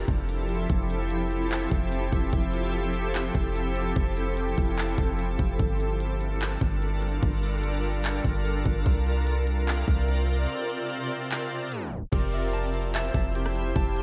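A shimmering, ethereal pad with sidechain pumping and chorus opens this blissful, floating cloud-rap excerpt alongside a deep, boomy 808 bass, with a half-time trap kit of hard-clipped kick, crisp hats, handclaps, rim clicks and crash cymbal joining almost at once. The dreamy mix is soaked in hall reverb as the chords drift from Fmaj9 through Gm7 to C9sus4, before a break at 10.5 seconds and a tape stop at 11.7 seconds. At 12.1 seconds a bright, ringing concert harp enters with fingerpicked arpeggios through a low-pass filter and analog delay as the harmony returns to Fmaj9.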